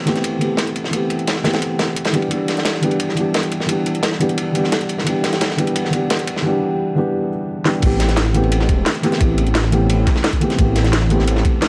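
A felt-muted upright piano, soft and boxy with audible action noise and tape echo, opens this lush, melancholic liquid drum and bass excerpt in A minor at 174 BPM, moving from Am9 to Em7 over a build-up of a crunchy, saturated breakbeat kit with dark cymbals, a layered electronic kit with cracking snare and metallic hats, and a thumpy, compressed kick in the background, with drum fills from 2.3 seconds, until a menacing, detuned sawtooth bass enters up front at the drop at 7.8 seconds, all set in a lush hall reverb.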